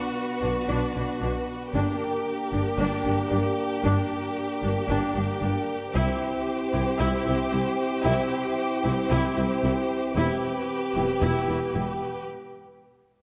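A wet scoring-stage reverb surrounds this cinematic excerpt, with a soft, rolled-off top end. Over sustained chords from a mellow, distant French horn section, one violin section carries a focused melody in the background while a second, expressive violin section plays a line beside it, and lush violas, smooth cellos and even double basses enter at 0.4 seconds to fill out the accompaniment and bass. The mood is relentless and heroic, building over Bm, Gm, C and Em harmonies until a brief break at 12.3 seconds.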